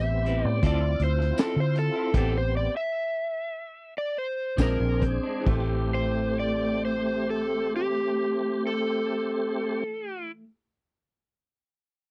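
A mournful, soulful soul blues fragment in A minor opens on an overdriven slide guitar played up front with fingerpicks, over a full tonewheel organ through a slow rotary speaker with chorus vibrato and a round, foam-muted fingered bass. Moments later a crunchy, saturated breakbeat kit with a high-tuned snare and dark cymbals arrives alongside lo-fi, compressed guitar stabs from a small old amp. The straight 4/4 groove, around 66-82 BPM, slows through the opening and pauses briefly; a bright, twangy second guitar line with warbly pitch drift joins at 4.6 s, and the drums stop at 5.7 s as the harmony settles on Am7, all in a dry, close 1970s-style studio sound.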